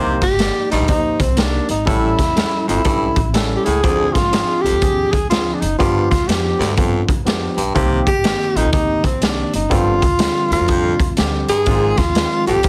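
Urgent and driving, this uptempo 1960s-style soul excerpt swings over a dark minor progression, with a breathy, up-front tenor saxophone carrying the melody in scooped, vibrato-laden phrases touched by slapback echo. Beneath it, a raspy, close-miked baritone saxophone pushes a gritty riff, a barky tine electric piano adds lightly overdriven accompaniment through a combo amp, and a woody, thumpy pizzicato upright bass anchors the low end. A raw garage drum kit of boomy kick, medium-tuned snare and hi-hat pumps in a small room with a saturated, rolled-off top, and the whole mix has the dry, heavily compressed sound of a radio broadcast.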